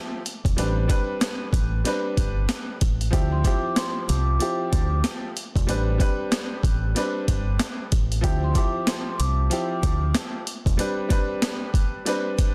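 A swung 94 BPM boom-bap groove in D dorian sets a gritty, dark mood, as a pitched-down, compressed sampler-style kit with a thumpy kick and high-tuned snare joins a worn, slightly detuned upright piano playing filtered Dm11 and Am11 chords, a round, deep fingered electric bass enters at 0.5 seconds, and a mellow soft-mallet vibraphone with slow motor vibrato and delay carries a high melody from 3.3 to 10.1 seconds in this dense, heavily limited excerpt cut from a longer piece.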